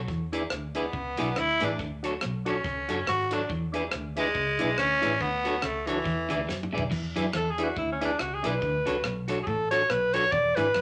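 A bright alto saxophone takes the spotlight in this joyful, upbeat ska excerpt, stepping up front for a solo with scooped, pop-style notes. Before that, a raspy tenor saxophone carries the melody from 0.8 seconds, gritty and punchy with vibrato, and a drum fill at 6.5 seconds hands the lead over to the alto solo at 6.9 seconds. Underneath, a dark, foam-muted vintage electric bass gives a round, amped bottom, while a dry, acoustic reggae kit with a high-tuned snare, tight kick, hi-hat, rim clicks, toms and crash cymbal drives the swung groove. A clean, picked electric guitar with spring reverb plays accompaniment, and a mellow, percussive tonewheel organ adds stabs colored by chorus vibrato and a slow rotary speaker. Further back, a slightly broken-up electric guitar plays a low riff with tremolo. The harmony sways between E7 and Dmaj7, all set in a wet studio reverb.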